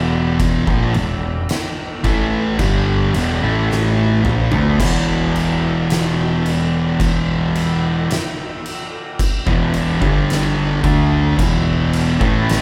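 A slow, straight 4/4 pulse at 55 BPM drags this ominous, brooding stoner and doom metal excerpt in E minor, cut from a longer piece, with three dark, picked fuzz guitars grinding out the riff over an Em chord from the start: one thick guitar up front, another thick one in the background, and a double-tracked fuzz guitar behind them. A growling picked electric bass adds overdriven, tube-saturated punch, while an oversized low-tuned drum kit enters at 0.4 seconds, its fat snare, punchy kick, toms and dark crash cymbals sounding gritty and forward in a pumping stone room. A drum fill at 3.7 seconds carries the band into the next section at 4.8 seconds, all of it heard as a band playing live in one large studio room with moderate reverb.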